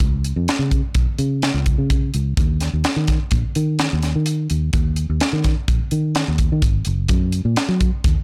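A blown-out, overdriven recording with little reverb puts a crisp fusion drum kit and a fingered electric bass up front in this short excerpt of playful, wistful math rock and midwest emo, moving at 127 BPM in 5/4 with a straight feel and tuned to A4 = 436 Hz. The kit sounds airy and polished, with a high-tuned snare, a punchy kick and hi-hat. The foam-muted bass is dark and round, and its direct, amped tone spans F#1 to F#3 from the start until 8.1 seconds.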